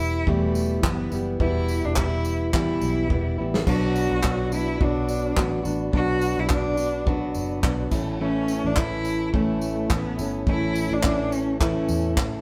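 A bowed cello carries the melody with a rich, focused tone, smooth top and vibrato in this carefree, heartfelt acoustic pop piece with a light swing, moving from Em to Bm to A. A full-bodied, fingerpicked jumbo steel-string acoustic guitar sits up front beside a dark, round, foam-muted electric bass and a natural country drum kit with punchy kick, medium-tuned snare, handclaps, tambourine and crash, which plays a fill at 3.1 seconds. At 3.7 seconds a very quiet, flute-like tonewheel organ enters with soft sustained chords, chorus vibrato and key click, all set in a moderate stone room as a band playing live together.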